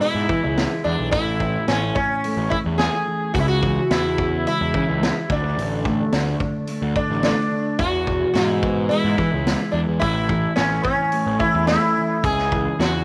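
An up-front sitar carries the melody in this hazy, kaleidoscopic psychedelic rock excerpt, its buzzing, shimmering, plectrum-plucked tone ringing with sympathetic strings and trailed by tape echo. Beneath it, a mellow, dark electric guitar plays a clean, fingered riff, double-tracked and sent through a rotary speaker. A fuzzy, overdriven picked bass sits forward in the mix, while a vintage acoustic drum kit keeps a straight 4/4 on hi-hat, kick and snare, with a punchy kick, a medium-tuned snare and a rolled-off top. A softly plucked tanpura drone, barely audible, hums underneath until 5.8 seconds. The chords move through E, A, C#m and D5, and the mix sits in a light, small-room reverb.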